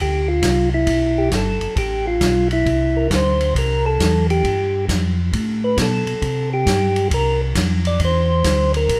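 Soul jazz organ trio in a swinging, bluesy groove with a swung-eighth feel, heard in a short cut from a longer piece. A percussive tonewheel organ takes the solo melody from the start, its round, dark tone marked by third-harmonic percussion and a slow rotary speaker, sitting up front in the mix. Beneath it, a second, mellow tonewheel organ carries the bass line in a low register, clean with a touch of key click and the same slow rotary spin. A vintage acoustic drum kit joins at 0.4 s with hi-hat, ride, snare and punchy kick, its dark cymbals and rolled-off top giving it a natural, close presence. The harmony moves between G9, Cadd9 and C9 chords, and a moderate large-studio reverb adds a roomy sheen to the trio.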